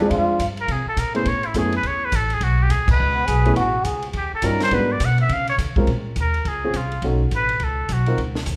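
A straight-muted trumpet carries the melody up front, its nasal, bright tone shaded with vibrato and scooped notes from its entrance at 0.6 seconds in this late-night, smoky fragment of small-group swing and bop, cut from a longer piece. A breathy trombone adds a second line in brief, whispered phrases with a soft attack and an intimate, vintage character, heard at the very start and again at 3.2 seconds. Beneath them, a baby grand piano accompanies with a warm, natural sound, while a woody pizzicato upright bass with steel strings sits up front. A compact cocktail kit keeps a swung feel with dry, dark cymbals across ride, hi-hat and crash, a high-tuned snare and a punchy kick, and the band hits a shared accent at 2.8 seconds. A moderate recital hall reverb places the group in a church or concert hall, as the harmony moves through rich extended chords.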